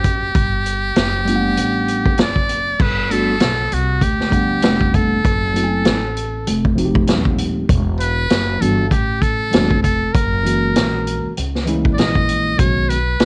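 A buzzy, breathy trumpet with a metal mute carries the melody up front, its scooped notes and light vibrato colored by cassette tape, over a cool jazz-hop groove at 98 BPM with a 16th-note swing. A vintage drum kit with a punchy kick, dark cymbals and 12-bit sampler grit sits beside a woody, thumpy pizzicato upright bass, while a worn, slightly out-of-tune tine electric piano enters at 1.2 seconds with mellow chords moving from Gmaj9 through F9 and Em9 to B69. Light reverb and a homespun cassette feel give this cut from a longer piece a warm glow.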